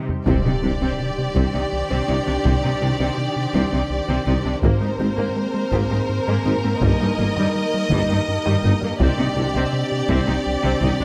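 A cinematic hybrid orchestral and electronic film score in C minor, relentless and futuristic at 55 BPM in 6/8, where a huge, bright impact at 0.3 s opens a passage in which a smooth studio violin section carries the melody over an expressive second violin line, with background violas, focused cellos, woody double basses, dark French horns and a mellow, distant tuba beneath, while a rubbery, bouncy square-wave bass riff, close and dry taiko drums struck with heavy sticks, a very quiet squelchy pluck arpeggio with phaser and an evolving, morphing wavetable pad fill out the sound in a light reverb.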